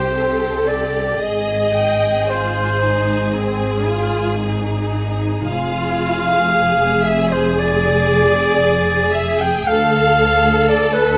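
A dark, softly attacked solo clarinet sits up front from the start, carrying a second line over bowed, vibrato-laden string sections in this moving, hopeful cinematic score, played rubato at 57 BPM in 4/4. Violins sing a smooth, lush melody while a rich, distant second violin section also carries a second line in the clarinet's range, violas add expressive portamento accompaniment, and warm cellos with softly attacked double basses anchor the bass through chords moving from C5 to Ab, Fm and Dm. A moderate scoring-stage reverb surrounds this 11.2-second passage cut from a longer piece.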